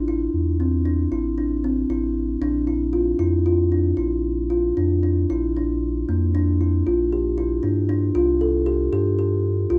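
A worn, warbling cassette sound with drifting pitch colours this short passage, set in a moderate studio reverb. It is contemporary chamber music in an uneven 11/8 metre with a straight feel, and the mood is restless yet hopeful. A kalimba plays arpeggios from 0.1 seconds, its thumb-plucked tines woody, mellow and dark, ringing up front. Beneath it, a sub bass doubled at the octave holds the low end with a deep, sine-like, sustained tone and a fast attack, also placed forward in the mix. The harmony moves from Am to Bb, and a second section at 5.3 seconds shifts to Bb6 and then Csus4 before the passage cuts off, taken from a longer piece.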